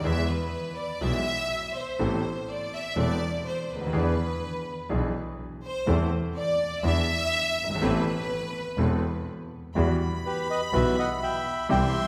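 A hall reverb gives this passionate, dramatic tango fragment a spacious, church-like glow, its loose rubato feel shaped around the minor harmony. A biting, intense violin section is up front and takes the spotlight until 9.8 s, over a polished grand piano with deep bass and a distant, earthy bowed double bass. At 10.3 s a reedy, dark, airy bandoneon steps forward with the melody as the passage moves into a new section and cuts off.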